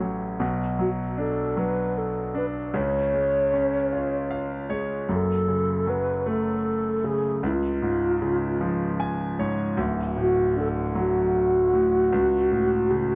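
A clear concert grand piano opens this aching, dramatic pop piece in F# harmonic minor, set in a slow 6/8 at 51 BPM, its deep bass, long sustain and audible action noise sitting intimately up front. From 0.8 seconds a reedy wooden-headed alto flute carries the melody with airy vibrato and tongued notes, its softened highs trailed by delay. The piano adds fills at 3.9 and 8.6 seconds as the chords move from Bm through C#, F#m and D, all within a dark, lightly reverberant production.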